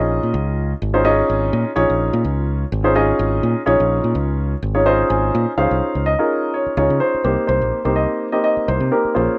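A light reverb gives this short cut from a longer electric jazz fusion piece a polished sheen, with both instruments placed close and up front. The mood is nocturnal and slick, carried by a gentle sixteenth-note swing in four. A grand piano with a warm, present tone supplies the accompaniment in the middle register, while a fingered electric bass sits underneath with a direct, warm electric sound. The harmony rests on a lush minor eleventh chord until the piano slips in a fill at 4.6 seconds, leading into a new section at 5.6 seconds built on a major ninth chord. A minor seventh chord follows at 7.2 seconds before the cut ends.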